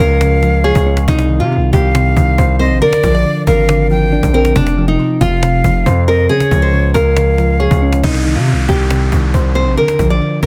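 A fingerpicked nylon-string guitar carries the full-bodied melody up front with audible finger squeak, while a breathy, bright flute with vibrato and chiff adds a second line and soft, mellow electric-piano-like keys with chorus fill in beneath, all over a heavy, saturated 808-style bass in this menacing, melancholic half-time trap piece. A snappy, close and dry cajon enters at 0.2 seconds, and the guitar and flute are both treated with delay. At 8.0 seconds the flute drops out as an electronic downlifter slides in for the closing passage of this cut from a longer track.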